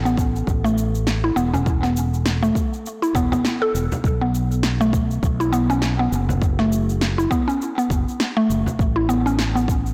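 This blown-out, overdriven recording sits in a light reverb, giving a short fragment of organic downtempo a hypnotic, mystical haze at 101 BPM in 4/4 with a 16th-note swing. A woody, round synth pluck with a mallet-like, FM character carries the arpeggios up front, its warbling chorus and digital delay coloring the decaying notes over chords moving from Asus2 to B5 at 4.0 seconds and back to Asus2 at 8.8 seconds. Beneath it, a fretless electric bass sounds warm and direct, pushed through transformer saturation and held up front in a low register. An electronic kick and layered cabasa and snare, both overdriven with small room ambience, give a deep kick and punchy snare, while an acoustic frame drum played with hard hands adds a deep, close, dry layer from 1.5 seconds. A very quiet bronze singing bowl rings on A4 throughout, its slow-beating, metallic tone soft and band-limited.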